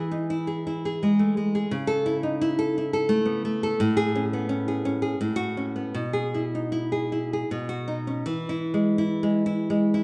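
Romantic solo classical guitar in E major, nostalgic and sunny, moving in a rubato 3/4 at roughly 77-88 BPM with tuning set slightly low at A4 = 436 Hz. A bright, up-front nylon-string guitar is fingerpicked from A2 to A4, passing through A/C#, Amaj7 and F#m/A before settling on B and returning to E at 8.2 seconds. The playing sits in a wet recital-hall reverb with a 1.5-second decay, giving this short cut from a longer piece the airy bloom of a church or concert hall.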